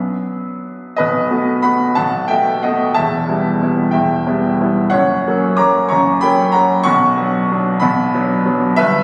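A bright upright piano carries this short classical waltz alone from 0.0 to 9.0 seconds, its woody, brilliant tone sitting up front and spanning a range from E1 to D6. Set in B minor and 3/4 at 184 BPM, the playing leans on rubato and uneven beats, giving the dance a nostalgic, bittersweet air. The harmony moves from B minor through B7, E minor and F#, arriving back on B minor at 6.9 seconds. A long, wet concert hall reverb surrounds the piano, which was captured on a phone in the room. The passage is cut from a longer piece.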